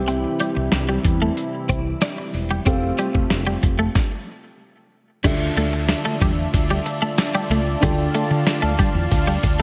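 Straight 4/4 drums from a muffled, pitched-down sampler-style kit, with a thumpy kick and gated reverb, sit up front in this nostalgic, moody 1980s-style pop fragment. They play alongside a jingly background tambourine, a growly, woody fretless bass, a dark grand piano with audible action noise, a detuned sawtooth pad with chorus and a clean twelve-string electric guitar riff through analog chorus and tape echo. After a stop at 4.0 seconds, a sludgy overdriven guitar with ensemble chorus joins in the background at 5.2 seconds.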